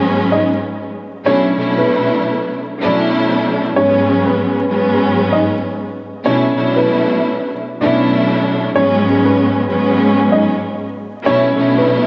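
A string section opens this short, tough and gritty hip hop excerpt with a swung feel, its bowed ensemble sound up front with vibrato, portamento and a smooth top, colored by a cassette-tape character. A dark, woody upright piano joins at 0.3 seconds to carry the melody, mellow and intimate with audible action noise, a slightly detuned edge, subtle chorus and delay. Chords alternate between G#m7 and Bm11, and the whole dreamy mix is soaked in a long plate reverb and dusted with vinyl crackle.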